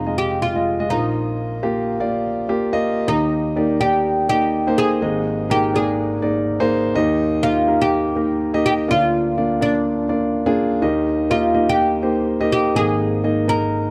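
Pop at 124 BPM in 4/4, this short excerpt from a longer piece carries a warm, anthemic mood, with a light 16th-note swing and a key of Eb major, tuned slightly below standard pitch to A4 = 437 Hz. A bright, woody oud carries the melody between D4 and Bb4, its plectrum-plucked double strings and fretless tone sitting up front. A dark grand piano with a mellow, vintage character supplies the accompaniment across a broad span from F1 to F5, also placed up front and sounding a touch louder than the oud. Both instruments play together from start to finish, opening on Fm7 and Bbsus4 before the harmony settles at 3.1 seconds into a cycle that returns to Eb between Absus2 and Bb/D chords, running until 13.9 seconds. The sound is dry and close, a 1970s-style studio capture with a small room's ambience around the two players.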